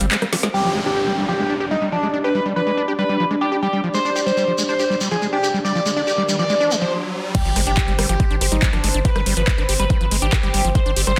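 Psychedelic trance at 141 BPM in G major, psychedelic and driving, this cut from a longer piece opens on a squelchy, distorted acid bass riff, a pulsing gated texture in the background, a brief touch of round analog bass and a short drum fill from the garage kit. At 0.5 s a screaming, guitar-like synth lead with phaser and dub echo joins alongside sound effects, followed by an ethereal airy pad at 1.7 s and a grainy, distant shekere at 3.9 s. After a riser and a brief stop, the drop at 7.3 s brings in an up-front knocking kick and the return of the overdriven garage kit with woody snare, metallic hats, handclaps and crash, with the deep, round analog bass following at 7.5 s. The sound is dense and heavily limited, set in a lush hall reverb.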